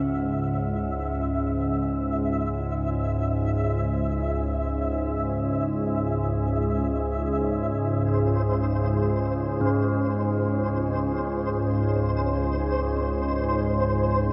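A low, organ-like drone with a detuned, chorused sine body sits up front on C# minor, while a grainy, flickering texture fades in high above it and a bronze singing bowl rings out arpeggios in the background, struck with a wooden striker. This dark, cavernous ambient piece in free time drifts in a huge reverberant space, the drone moving under a filter sweep and the mellow granular shimmer sustaining throughout. The bowl's metallic, slowly beating tones fall silent at 2.5 seconds and return from 9.6 seconds until the cut at 14.3 seconds.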